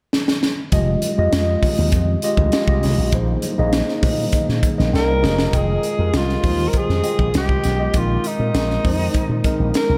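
Polished 1980s jazz-funk pop at 100 BPM in a straight 4/4, upbeat and breezy, cut from a longer piece and soaked in dreamy cathedral reverb. A crisp fusion kit with a high-tuned snare and tight kick opens with a fill, then a punchy, bright slap bass through an envelope filter and a mellow tine electric piano with lush chorus settle over Fm9 and Bb9sus4, while very quiet, ringing congas sit far back until 5.4 seconds. From 5.0 seconds a warm alto saxophone takes a jazz-style solo with vibrato, scooped notes and delay, its tone roomy.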